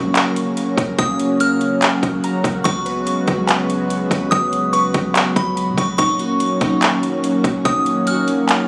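A warm, detuned sawtooth pad sits up front in this blissful, dreamy cloud-rap excerpt, holding sustained chords through its slow attack while sidechain pumping and chorus make it breathe around a half-time feel at 144 BPM in F# major. An electronic trap kit joins at 0.2 seconds, also up front, with a hard-clipped kick, metallic hi-hats, handclaps and a tape-warm tone, while a barely audible electronic impact marks the entrance. From 1.0 seconds a delicate, tinkling FM tine bell carries the melody high above, coloured by chorus, phaser and delay. Farther back, glassy, airy digital keys spin arpeggios with a noise layer and filter sweep, and a clean, boomy sine 808 bass supplies mellow, decaying low notes. The harmony moves from F# to C#7sus4 at 2.7 seconds and then to D#m7, all wrapped in light reverb and a compressed, phone-recorded studio ambience.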